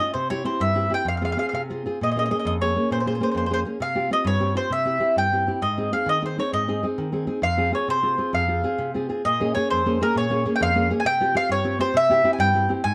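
In a rubato 6/8 lilt at 132 dotted-quarter beats per minute, this romantic, passionate Italian folk serenade fragment pairs a picked mandolin carrying the melody with a fingerpicked classical nylon-string guitar accompanying throughout its 12.9 seconds. The mandolin's round, double-string tone sits up front with a plate reverb, while the guitar, also close and present, moves through minor-leaning harmony from C and Fm to Bbm7, Csus4 and Ab. A dark, warm production and a moderate studio room give the pair an intimate glow.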